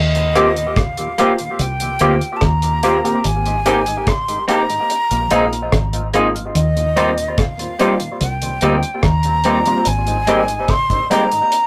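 Lovers rock reggae with a smooth, tender mood, cut from a longer piece and moving with a straight four-beat feel. A breathy metal flute carries the melody, close-miked, with vibrato and tongued notes, while a deep dub fingered bass sits up front, round and foam-muted. A cloth-damped, thuddy drum kit plays hi-hat, tight kick and rim click, dark and dry with a rolled-off top. A tonewheel organ hovers in the background with key click and a slow rotary speaker. A barky tine electric piano, lightly overdriven through a combo amp with phaser and tape echo, shares the accompaniment with picked guitar stabs from a small old amp: lo-fi, slightly broken-up, compressed, and the loudest part in the mix. The chords move from Eb6 through Abmaj7 and Bb7sus4 and back to Eb6, captured in a rough rehearsal-room recording with tube saturation and a short, wet booth ambience.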